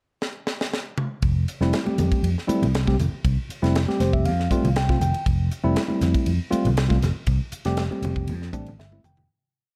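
A small room gives this electric jazz fusion piece a dark, warm production, and the mood is bright and slick. A crisp, airy, polished drum kit opens with a fill before the groove settles in at 1.2 seconds, where its punchy kick, high-tuned snare and fusion ride pattern sit up front. An amped, growly fingered electric bass plays a syncopated riff, and a clean, mellow tine electric piano comps a funk chord rhythm in rootless voicings over a single Fmaj9 harmony, adding fills from 3.7 seconds and again near the close. Damped, high-tuned congas with a thin skin tap out a loose pattern in the background. The piece begins fading out at 7.3 seconds, and a final drum fill arrives at 8.8 seconds.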